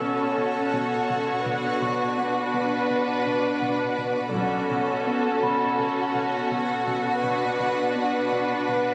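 In a straight 4/4 pulse, this mysterious, eerie excerpt of suspense film score sets a veiled con sordino chamber violin melody over a lush, close studio violin second line and dark studio violas, while a shimmering, ethereal pad with chorus, phaser and its own reverb holds sustained chords, a smooth sawtooth synth bass plays a riff, chamber cellos anchor the low end, a delicate, bell-like celesta adds background texture, and muted double basses appear only from 4.3 to 5.0 seconds, all captured on a phone in a scoring-stage room with moderate reverb.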